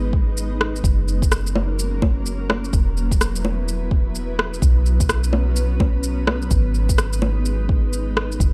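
Ghostly and nocturnal, this future garage fragment opens with a cloudy, evolving granular pad holding blurred sustained chords over a deep, round 808-style bass, both breathing with sidechain pumping as the harmony moves from G#m through F#, Esus2 and Bsus2. A deep electronic kick arrives at 0.1 seconds and layered electronic shaker, rim click and bongos follow at 0.4 seconds, all sitting up front with a tape-tinged studio reverb and a swung sixteenth-note feel. The production is dark and digital, with the soft bass and percussion close to the listener while the slow-blooming pad sits quieter, washed in its own built-in reverb.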